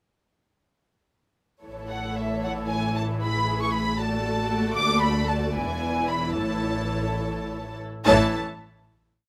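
Floating, sul tasto violins carry the up-front melody from 1.9 s in this graceful, spirited classical-period movement for string orchestra in a straight 6/8, over second violins and more distant violas holding tremolo chords, cellos sustaining a rich, pure bass, and double basses doubling that line, all in a moderate studio reverb until the closing chord at 8.1 s.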